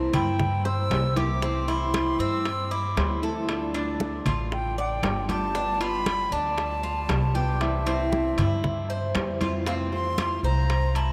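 A relaxed, danceable straight 4/4 groove in Cuban son and guajira style is set by thick-skinned congas struck with hard hands in the background, very quiet high-tuned bongos and ringing metal-shell timbales, with a drum fill at 0.7 seconds. A woody pizzicato upright bass sits up front beneath a dark, fingerpicked nylon-string guitar and metallic, double-stringed Cuban tres arpeggios. An airy, reedy concert flute carries the tongued melody over chords moving from C7 to Fmaj7 as a new section begins at 9.7 seconds, and this cut from a longer piece is bathed in a long cathedral reverb that makes the space sound vast and echoing.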